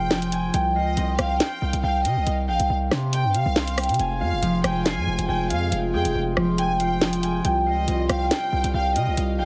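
Dark and cold, this half-time drill excerpt sets a fingerpicked Celtic harp ringing out filtered, delay-echoed arpeggios over a punchy, heavy 808-style bass and a tape-warm drill kit of bright hi-hats, rim clicks and a sharp snare, while a lush, bowed violin section adds an expressive second line with vibrato and portamento, mellow French horns join with sustained chords at 4.0 seconds, and a heavily compressed radio-like sound colours the room.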